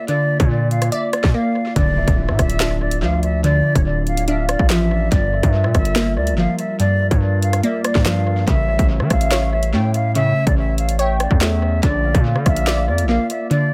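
A half-time drill groove in 4/4 drives this dark, ominous hip hop excerpt, its electronic kit of hard-clipped kick, sharp snare, hi-hat, handclaps and rim click sitting up front with tape echo, then dropping out briefly at 1.3 seconds. A distorted 808-style bass, heavy and saturated with a noise layer and a fast attack, is just as prominent, while a crystalline wavetable pluck with chorus, a filter sweep and tape echo carries the accompaniment. Over this, an airy concert flute plays the melody with a straight tone and crisp attack, set distant and echoed. A glass harmonica holds ethereal, slow-attack chords in the background, and from 2.0 seconds a velvety, detuned synth lead with vibrato and chorus adds a soft second line. A very quiet electronic impact marks the shift at 1.8 seconds, as the harmony moves from Bb through Dmadd9, Gm7 and A back to Bb in a dry, echo-heavy mix.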